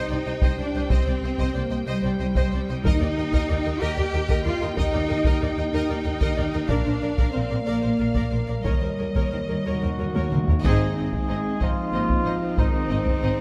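Adventurous and triumphant, this epic orchestral film score cue moves in a straight 6/8, cut from a longer piece, with intense, vibrato-laden violins carrying the melody over a smooth second violin line, rich focused violas and cellos, bowed double basses, dark distant French horns holding chords, and close, dry taiko drums struck with heavy sticks. Round, soft-mallet timpani surface in the background, building to a fill before dark trombones and mellow, vintage-toned trumpet stabs join at 9.7 seconds. A full-band accent at 10.7 seconds opens the closing section, where a soft-attack string section adds expressive sustained chords under light reverb.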